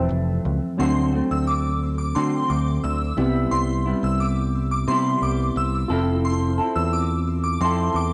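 Indie and bedroom pop at 88 BPM, this nostalgic, dreamy piece moves through Fmaj7, D7 and Cmaj7 as a clean semi-hollow electric guitar, drenched in lush chorus and vibrato, and a worn, slightly out-of-tune tine electric piano, lightly overdriven and set in the background, carry the accompaniment over a dark, round picked electric bass sitting up front. At 0.8 s a shimmering, warbling FM bell enters high above as a second line, detuned and bright with ensemble chorus and tape echo, each fast-attack note decaying into a long release. A moderate spring reverb and cassette home-recording character give the cut a vintage haze.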